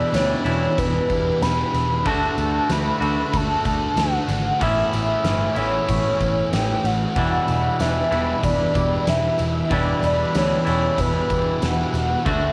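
A melancholic, hazy shoegaze and dream pop excerpt at 94 BPM in E dorian opens with a velvety, detuned synth lead carrying the melody through chorus, tremolo, tape and analog delay over a faint crystalline pad, a thick fuzz guitar riff, a twangy clean guitar washed in reverse reverb, a round foam-muted picked bass, a huge arena drum kit with a fat snare and punchy kick, and a very quiet jingly tambourine, all moving through Em7, D and Aadd9 in a home cassette recording with light reverb.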